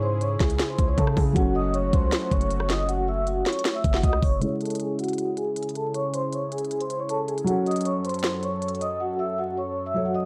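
A soft-mallet vibraphone carries the melody up front, its metallic, ringing tone carrying a fast motor vibrato and softened by a low-pass filter. This brooding, eerie trap and hip hop cut in C# harmonic minor moves at 157 BPM with a half-time feel, shifting between C#m and F#m. Beneath the vibraphone, a dark concert grand piano adds boxy, deep-toned accompaniment, and an analog pad of detuned sawtooth waves sustains slow-attack chords through chorus and a low-pass filter. A punchy, heavy 808-style bass with a noise layer anchors the opening, stopping at 4.4 seconds when a filter sweep begins. The produced trap kit sits up front with a knocking kick, sharp snare, crisp hats and rim clicks until 8.9 seconds. The whole excerpt carries a dry, gritty hardware character with vinyl crackle and digital ambience.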